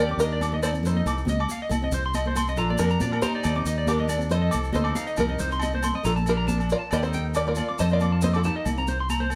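A round, up-front fingered electric bass anchors this carefree highlife guitar band excerpt, as a plunky, fingerpicked open-back banjo carries the melody over slightly broken-up, twangy electric guitar arpeggios, a clear jazz-style trumpet with light vibrato sits back on a second line, a bright nylon-string guitar with audible finger squeak fills in the accompaniment, and grainy maracas shake along while ringing agogo bells and high-tuned, thin-skinned congas patter in the background, all heard as a band playing live together in one large studio room with moderate reverb.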